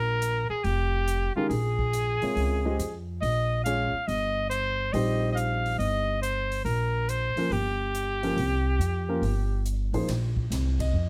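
Spiritual and searching, this short modal jazz passage, cut from a longer piece, swings at 140 BPM in 4/4. A clear, forceful trumpet carries the melody up front, its scooped notes and light vibrato giving it a vintage solo character, until it stops at 9.7 s. Beneath it, a woody pizzicato upright bass on steel strings sits close and present from the start. A big-band drum kit with hi-hat, ride, medium-tuned snare and punchy kick adds an airy, polished pulse further back in the mix. A warm concert grand piano enters at 1.4 s with intimate, smooth accompaniment, its deep bass and short sustain colored by audible action noise. The harmony moves from Bbm9 to Cm before settling on Bbsus2 near the close, and the detailed, closely miked sound keeps reverb to a minimum.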